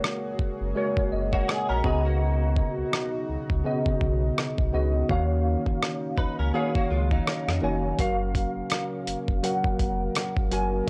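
A bright, worn tine electric piano with light overdrive and ensemble chorus opens this tender, smooth contemporary R&B excerpt at 83 BPM in F# major with a swung sixteenth feel, alongside a shimmering, dark pulse-width pad pumped by sidechain and a dusty, compressed sampler-style drum kit with a thumpy kick, hi-hat and rim click, while a deep sub bass with octave enters at 0.4 seconds, the piano adds an early fill, a clean, direct-recorded electric guitar plays chorused arpeggios from 1.3 to 7.9 seconds, and the chords move from G#9sus4 through C#9sus4 to F#maj13 and F#maj7, all in a dry, gritty hardware recording with digital ambience.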